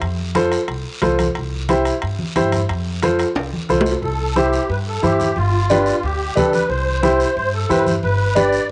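Sunny and festive, this brief cumbia cut from a longer piece moves at a brisk 180 BPM in C major. A woody, growly pizzicato upright bass sits up front with low-tuned, thick-skinned congas, a raspy guiro and ringing metal-shell timbales, while a warm upright piano carries the chords with a cassette-tape tint. After a drum fill at 3.4 s the timbales stop, and at 4.0 s a reedy, shimmering musette accordion, also tape-coloured, enters as a second line, all within a small room with moderate spring reverb and the dulled top end of a home cassette recording.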